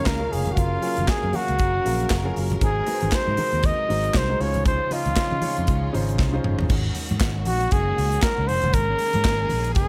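Small-room ambience frames this danceable, driving disco excerpt at 118 BPM with a light sixteenth-note swing, where a breathy, whispered flugelhorn carries the melody up front over a worn, long-sustaining baby grand piano that drops out at 6.7 s, lush bowed strings with vibrato in the background, a punchy amped fingered bass, an up-front studio drum kit with bright cymbals that plays a fill just before 6.7 s, very quiet crisp group handclaps and low-tuned damped congas, as the chords move from Db69 through Gbmaj7, Ab7 and Dbmaj7 to a suspended Ab9sus4.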